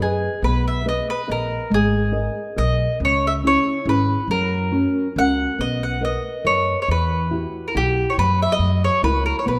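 A round, double-strung mandolin sits up front, picking a romantic, sunny Italian serenade melody in three-four. Beneath it, a small-sounding nylon-string guitar with fresh strings is thumb-plucked in accompaniment, while a woody, dark pizzicato upright bass anchors the low end, all three playing throughout this passage cut from a longer piece. The harmony drifts through colourful chords such as a major seventh and a minor added ninth, and a moderate recital-hall reverb gives the trio a gentle sense of space.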